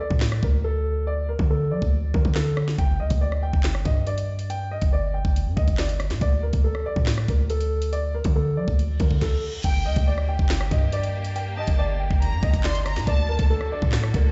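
Heard as if through a big sound system in a bare stone room, with a muffled top end, this ominous, dark drill cut opens on a mellow, boxy piano melody with delay over a half-time groove. A punchy, heavy 808-style bass with a fast attack and an electronic drum kit of knocking kick, sharp snare, metallic hats, handclaps, rim clicks and crashes sit up front, and a brief reverse cymbal and a stop lead into a new section at 9.6 seconds. There, a close, rich violin section with vibrato and delay carries a second line above lush, bowed symphonic strings holding sustained chords.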